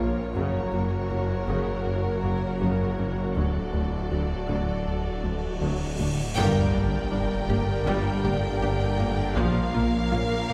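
Relentless and vast, this cinematic excerpt of hybrid orchestral and electronic film score moves at 80 BPM in G harmonic minor, built on an airy, breathy chorused pad, bright analog pluck arpeggios, a round, nasal analog bass riff and a thick, saturated detuned saw bass, all alongside a lush bed of bowed strings: a distant studio violin line, expressive violas, and very quiet cellos and double basses. A huge, dark cymbal swell and sub drop rises from 5.4 s into an impact at 6.4 s, where focused symphonic violins take the melody over sustained chords from clear trombones and background French horns. Everything sits back in a wet scoring-stage reverb, with the harmony moving from F# and D to Gm and then Bbm.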